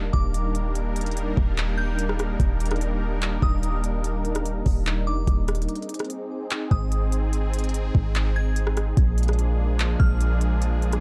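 A half-time hip hop groove carries this blissful, dreamy cloud-rap fragment: an up-front, electronic R&B kit with a knocking kick, smooth hi-hats, handclaps and rim clicks sits over a deep, boomy 808-style sine bass, with a short break from 5.7 to 6.5 seconds. An airy, detuned sawtooth pad with a noise layer holds sustained chords through chorus and sidechain pumping. In the background, a crystalline FM bell plays a high, warbling melody through chorus, tremolo and delay, all set in a dark digital ambience.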